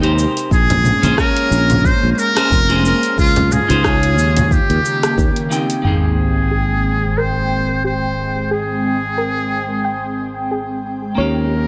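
Light digital reverb frames this smooth sunset chillout excerpt at 90 BPM in Ab major, where a buzzy, metal-muted trumpet with vibrato and scooped notes carries the jazz-style melody over a growly fretless bass, a twangy clean guitar with delay and an airy, breathy pad with chorus and phaser, while a tape-warm deep house kit with cabasa, hi-hat, rim click and toms, a deep electronic kick and very quiet ringing congas have all stopped by 5.8 s, when a sub drop hits and a dark, round pluck arpeggio under a filter sweep enters in the background.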